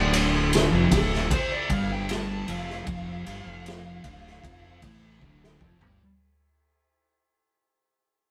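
Heard as a band playing live in a stone room with moderate reverb, this ominous, sludgy stoner and doom metal fragment fades out throughout as a compressed fuzz lead guitar solos until 4.8 seconds over two dark, picked fuzz rhythm guitars riffing in the background, an overdriven fingered bass and an up-front, gritty garage drum kit with a boomy kick and rolled-off top that closes on a fill from 5.2 seconds.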